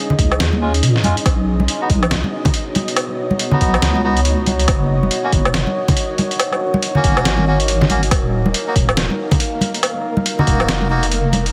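Brooding and heavy, this deep dubstep fragment moves with a swung, half-time feel in 4/4. A dark ambient pad holds sustained sawtooth chords with chorus and its own reverb, shifting from Db through B and Gb to Eb minor, while a grainy, flickering granular texture sits in the background. Up front, a soft wobble bass built from triangle and sine tones anchors the low end with chorus. It enters at 0.2 seconds together with a layered electronic kick and a gritty, pitched-down sampler-style kit of hi-hat, snare and woodblock. Bright, close acoustic congas carry dub echo, and from 0.6 seconds a reedy, breathy melodica plays filtered stabs, also trailed by dub echo, all set in light digital ambience with a heavily compressed, radio-like sound.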